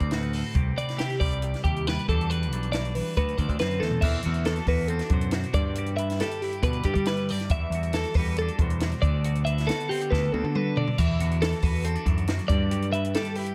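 Two bright, twangy twelve-string electric guitars open this playful, wistful math rock and midwest emo excerpt alongside a growling, overdriven electric bass and a compact cocktail drum kit. One guitar carries clean, up-front accompaniment through spring reverb and analog delay while the other picks high arpeggios over lush chords such as Cmaj9, Em11 and E9sus4. The dry acoustic kit, with its punchy kick, high-tuned snare and dark cymbals, adds a drum fill at 3.8 seconds and another from 10.1 to 11.0 seconds, all within an echo-heavy mix and a small-room ambience.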